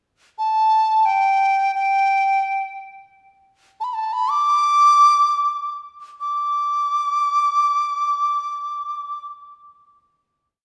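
A bright, pure large dizi plays alone from 0.4 seconds, its bamboo tone and buzzing membrane up front as it spins a graceful, festive modal melody with ornaments, tongued notes and vibrato, slowing from 3.1 seconds into a final held note at 6.2 seconds that rings into the lush reverb of a church or concert hall in this brief piece of Chinese traditional chamber music.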